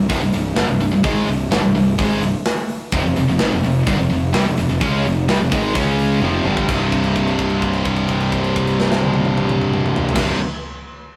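The excerpt opens on a high-gain distorted guitar riff up front, backed by a second distorted guitar in the background and a fuzz-laden fingered electric bass, with a tight acoustic metal kit of crash, hi-hat, kick, snare and toms entering at 0.1 seconds in this epic, relentless heavy metal passage at 128 BPM in C minor. A very quiet double-tracked guitar joins at 2.9 seconds as the chords move through F5 and Db5. A drum fill at 6.2 seconds leads into a held C5 note from 6.7 seconds, all captured in a rough rehearsal-room sound with light reverb and warm saturation, the guitars bright throughout.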